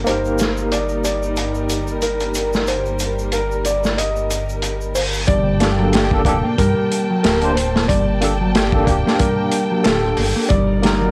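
A cinematic, smoky trip hop excerpt opens on a barky tine electric piano, pulsing with tremolo and roughened by sampler grit and cassette tape, over a lush, woody string section bowed sul tasto with vibrato and a deep, rumbling detuned saw bass. A soft, felt-muted upright piano carries the melody almost at once, its action noise audible and its notes trailing into tape echo and plate reverb. Underneath sits a swung, crunchy breakbeat kit, gritty and saturated with a tight kick, a medium-tuned snare and a rolled-off top, placed up front in a small room, while a compressed tube shaker ticks in the background until 5.2 seconds. At 5.3 seconds a clean, fingered electric guitar enters with dark arpeggios soaked in cassette tape and echo as the harmony moves from Eb/G to Gmadd9, settling on Eb at 10.5 seconds. The whole excerpt carries the intimate character of a home cassette recording with light reverb.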